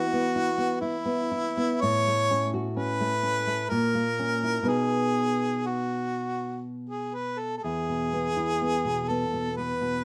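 A light reverb surrounds this recording of a romantic duo for harmonica and nylon-string guitar, cut from a longer piece. In 3/4 at roughly 57-67 BPM, the music moves with a free rubato feel in E major, its mood lyrical and warm. The harmonica carries the melody up front, its tone warm and close-miked with a light vibrato, singing in a classical style between E4 and C#5. Beneath it, the classical guitar supplies a dark, full-bodied accompaniment, thumb-plucked and reaching down to E2. The harmony travels from E5 through F#m/A and A#dim to B, settling back on E at 7.6 seconds.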